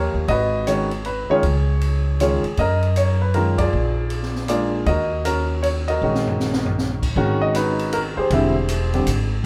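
Jazz piano trio excerpt in a cool, swinging 3/4 at 157 BPM in Eb minor, with an intimate concert grand carrying the melody over woody, thumpy pizzicato upright bass and an open acoustic kit with dark cymbals, a high-tuned snare and boomy kick entering at 0.3 s, the band playing live together in a large studio room, marked by a band accent at 3.5 seconds and a drum fill from 6.0 to 6.8 seconds before a new section arrives at 7.2 seconds.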